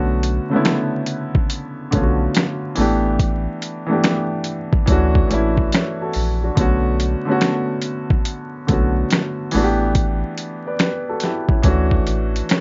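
Vinyl crackle and a light reverb sit over a muffled, dusty top end in this melancholic, reflective lo-fi hip hop excerpt, moving at 71 BPM in B minor with a lazy swing on the 16ths. A woody upright piano, softened further by a low-pass filter, voices the Bm7, A7sus4 and Dmaj7 changes over a deep, round sub bass. Up front, a gritty, overdriven sampler-style kit enters at 0.2 seconds with a thumpy kick, medium-tuned snare, hi-hat and finger snaps.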